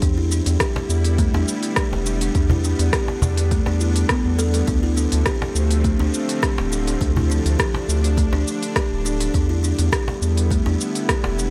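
A lightly swung groove of an overdriven, deep electronic kick, smooth hi-hats, rim clicks and shaker, joined at 0.8 seconds by a woody, close cajon, carries this earthy, mystical organic downtempo excerpt. A round, dark analog bass sits up front with sidechain pumping, a buzzing, hollow kalimba rings out delayed arpeggios, and a tense, bright string-like drone with vibrato and its own reverb pumps behind them through Em7 and Dm7 chords.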